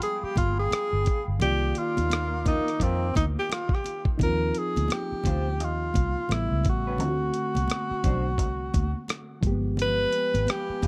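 A dark production with light reverb and a small-room ambience frames this soulful, sensual R&B and neo-soul passage, cut from a longer piece and set at 86 BPM in 4/4 with a 62% swing on the sixteenths in Eb major. Up front, a gritty, compressed sampler-style drum kit drives a thumpy kick alongside hi-hat and rim click, while a vintage foam-muted fingered electric bass sounds round and punchy beneath chords such as G7b9, Cm11, Eb69 and A9. A mellow tenor saxophone carries the melody, taking a jazz-style solo through 4.2 seconds with vibrato, scooped notes and a smooth top, over a reedy, clean electric piano. Airy flute ensemble chords with a soft attack and rolled-off highs hover in the background, dropping out at 4.2 seconds and returning at 9.8. From 2.5 seconds, an electric guitar through a small old amp adds a slightly broken-up, picked second line drenched in lush chorus, and very quiet, high-tuned congas with a thin, damped skin and hard hands add a bright touch.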